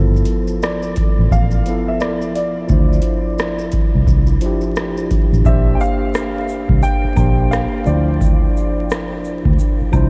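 A loping 87 BPM swing in 4/4 sets this reflective, hazy lo-fi hip hop fragment in D minor, where a booming analog drum machine with a deep kick and metallic hats sits up front over a round, foam-muted vintage bass, a tine electric piano softened by cassette tape and a low-pass filter moves through G13 and Dm9, a worn, woody, slightly detuned upright piano carries the melody with subtle chorus and analog delay, and from 5.5 seconds, as the hi-hats drop out, a faint egg shaker and woodblock join beneath light reverb and vinyl crackle.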